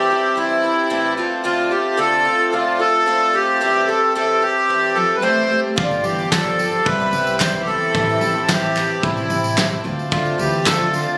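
Wistful and bittersweet, this indie folk excerpt opens with a reedy, up-front accordion carrying the melody over a shimmering, octave-doubled picked twelve-string acoustic guitar and the breathing, nasal sustained chords of a hand-pumped harmonium. At 5.0 seconds a dark bowed cello adds an expressive second line with vibrato and portamento. From 5.8 seconds the arrangement builds as a woody, growly pizzicato upright bass, a soft brush drum kit with a fat snare and punchy kick, and a jingly, distant tambourine join, followed shortly by crisp group handclaps in the background, all set in light reverb and small room ambience captured on a phone in the room.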